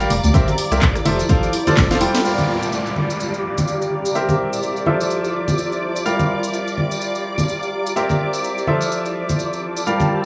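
Piano house with a bittersweet, soulful swing, led by a bright, brilliant baby grand riff with tape echo and a low-pass filter over a silky, chorused analog string pad with 12-bit grit and a blurred granular cloud pad, all three pumping to the sidechain, while a layered house kit of cracking snare, handclaps, hats, rim click and shaker meets hard-hand tambourine and congas, a punchy electronic kick and hollow, organ-like FM bass drive the opening until a drum fill at 1.8 seconds, and an electronic downlifter sinks through from 2.2 to 6.1 seconds in this small-room cut from a longer piece.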